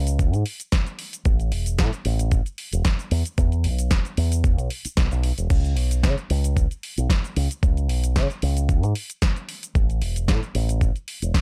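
A dark, warm-produced excerpt of sleek, cosmic nu-disco with a lightly swung groove, built on an up-front fingered electric bass run through an envelope filter, a gritty, thumpy electronic kick, and a punchy, layered house drum kit of cabasa, crash cymbal, hi-hat and snare, all playing together from the opening second to about 11.4 seconds.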